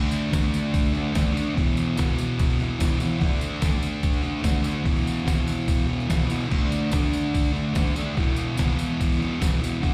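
A straight 4/4 pulse at 145 BPM drives this swaggering, menacing garage rock excerpt, where a thick, double-tracked fuzz guitar sits up front picking a riff that alternates D5 and E5 power chords, a gritty, pitched-down sampler-style drum kit with a thumpy kick, crash, hi-hat and medium-tuned snare enters at 0.3 seconds, and a jingly tambourine lingers in the background, all heard as a live gig through the venue's PA with recital hall reverb.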